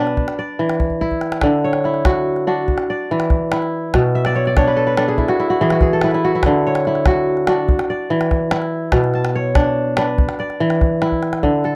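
Joyful and flowing, this short cut from a longer piece of West African string and xylophone music in a straight 12/8 sets a crisp, ringing, fingerpicked kora up front spinning arpeggios over a deep calabash heard in a live room, with a kora fill from 4.1 to 6.4 seconds and brief drum fills, all captured in a dry, close 1970s-style studio sound.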